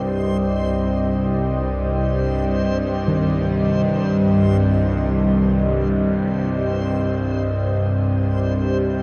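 A dark ambient drone in free time and C minor, tuned to A4 = 439 Hz, opens at once with a string-like, tense bowed-like drone low in the range, sitting up front with phaser and vibrato colouring its detuned sawtooth body. Beside it, a deep, moody pad holds sustained Cmadd9 chords, its sub-octave weight softened by chorus and shimmer reverb. High above, a reversed, dreamy texture on C5 adds a faint granular glow. At 3.1 seconds, very quiet gamelan-type bossed gongs enter with arpeggios on Eb3, their bronze, beating tone round and smooth. A huge, wet reverb with a 7.4-second tail surrounds this fragment of a longer piece, making it feel cavernous and unsettling.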